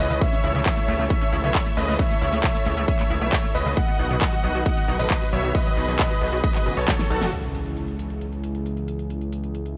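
Huge, bright supersaw chords carry the melody in this bittersweet, soaring uplifting trance excerpt, cut from a longer piece and moving at 135 BPM in 4/4 with a straight feel in C# minor. The drop runs from the start to 7.3 seconds, with the supersaws pumping against the sidechain and trailing dub echo. Beneath them a clear concert grand piano plays a second line with tape echo, and a lush, warbling vintage pad holds sustained chords under chorus. A liquid acid bass adds squelchy, resonant arpeggios through a phaser. A gritty, aggressive driven synth bass sits up front with a saturated sawtooth bite, while a punchy, tape-tinged electronic kick drives until 7.0 seconds and a big-room kit adds a huge snare, crisp hats, handclaps and ride cymbal. After a drum fill and a band accent, an electronic impact arrives at 7.3 seconds in the background as a filter sweep moves across an analog synth pad, all set in a digital ambience.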